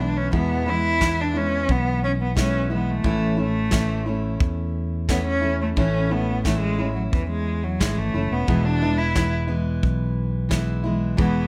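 Peaceful and gentle, this short acoustic folk passage in an unhurried 4/4 features a clear, focused bowed cello carrying a solo line with vibrato, close and up front across the whole 11.5 seconds. Beneath it, a bright, full-bodied jumbo steel-string guitar is picked with audible finger squeak, a fingered electric bass sits warm and direct, and a soft brush drum kit with a punchy kick and medium-tuned snare plays from 0.3 to 11.3 seconds. The harmony moves from E to A and back to E at 8.5 seconds, all under a light reverb.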